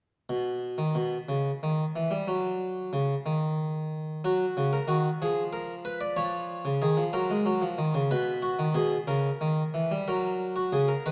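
Lively yet stately, this short cut from a longer baroque-style two-part invention sets a solo harpsichord in a straight 6/8 at 61 BPM, its close-miked, up-front plucked tone round and full with a single set of strings, ranging from B2 to D5 against a moderate reverb between 0.3 and 11.1 seconds, while the harmony moves from F# through diminished-seventh colours and B back to F#.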